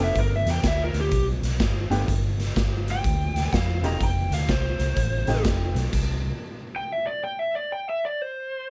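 A light reverb sets the band in a compact space, with the overdriven lead guitar and the gritty drum kit placed up front. This is a laid-back, swaggering electric blues shuffle in 4/4 at 125 BPM, swung on the eighth notes and tuned slightly sharp to A4 = 443 Hz, moving from G9 to F9 at 4.0 seconds. The raw garage kit, with its punchy kick, medium-tuned snare, hi-hat and crash cymbal, sounds saturated in a bright, pumping stone room with a rolled-off top. Beneath it, a vintage foam-muted fingered electric bass gives a dark, round, amped low end, while a clear upright piano adds woody, slightly detuned accompaniment with short sustain. The band breaks off into a stop at 5.9 seconds, and the dusky, picked lead guitar from a small cranked amp carries on through it until this excerpt ends at 8.7 seconds.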